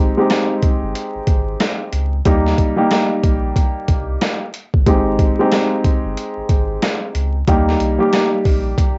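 A dark, mellow grand piano opens this nostalgic boom-bap hip-hop excerpt together with a round, deep analog bass, moving between Abmaj7 and Eb chords in Ab major at 92 BPM. The drums join at 0.3 seconds: a compressed, sampler-style kit with a thumpy kick, a medium-tuned snare, rim clicks and hi-hats, swung on the sixteenths and gritty from cassette tape and a large-room re-recording. The piano sits up front with short sustain, its tone narrowed by filtering and tape, while the sustained bass carries transformer saturation and a filter sweep beneath it. The bass stops at 8.7 seconds, just before the piano and drums finish at 9.0 seconds. The mix is dry and homespun, with vinyl crackle and a dulled top end that lend the whole a warm, lo-fi haze.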